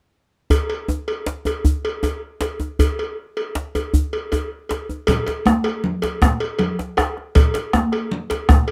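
West African traditional drumming in a festive, powerful 12/8 at 105 BPM, this short cut from a longer piece opens with a metallic cowbell, set in a large, distant room, and a medium-tuned djembe with metal rattles, played with soft hands and captured close and dry. At 5.1 seconds a round, vintage-sounding bombo and bright, high-tuned congas with thin skins and hard hands join in, both carrying a band-limited character. Close, detailed miking and light reverb keep the ensemble up front and vivid.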